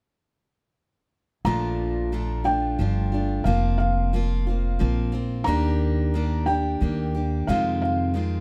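A piece in 3/4 at 90 BPM with a straight feel, this short acoustic folk excerpt in Bb major carries a peaceful, hopeful mood. All three instruments enter together at 1.4 seconds and play through to 8.4 seconds, moving through Bbmaj7, Fsus4, Ebmaj7 and Fm7. A felt-muted upright piano carries the melody high in its range, its thick-felt tone dark and intimate, with the soft clatter of its action audible beneath the notes. A picked steel-string acoustic guitar supplies the accompaniment up front, bright with fresh strings and audible finger squeak. The upright bass, played pizzicato, sits close and thumpy with a woody, warm body. The recording is dry and closely miked, capturing each instrument in fine detail.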